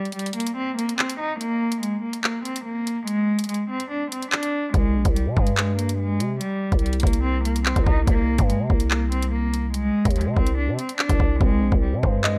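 This drill-style hip hop excerpt moves at 144 BPM in 4/4 with a half-time feel, carrying a dark, ominous mood. A single bowed cello plays the melody from the very start, its sound rich, pure and floating, with a soft attack and a sul tasto tone softened further by a low-pass filter. The electronic drill kit sits up front with a knocking kick, bright hi-hats and handclaps, all pushed through overdrive. At 4.7 seconds a growling, buzzy 808-style bass arrives with a fast attack and decaying sine tone as the harmony moves from Abmaj7 through C5 to Bb7 over C. At 11.4 seconds the hi-hats drop out and a dark, mellow grand piano enters on a rootless Fm7 voicing, intimate and boxy with audible action noise, while the whole production sits in a small room with a dark, warm character.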